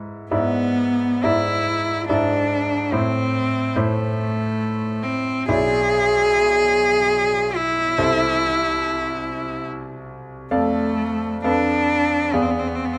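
Rubato phrasing stretches the uneven beats of a slow triple metre in this yearning, solemn romantic duo, a short passage lifted from a longer classical piece. A single bowed cello carries the melody from 0.3 seconds, its rich, smooth tone shaded with vibrato, while the bright concert grand accompanies beneath with a brilliant sound and deep bass as the harmony passes from E7/G# through Am and Dm/F to a tense E7b9 at 12.3 seconds. Both instruments sit up front under close, detailed microphones, with the cello a little louder, surrounded by the moderate reverb of a recital hall.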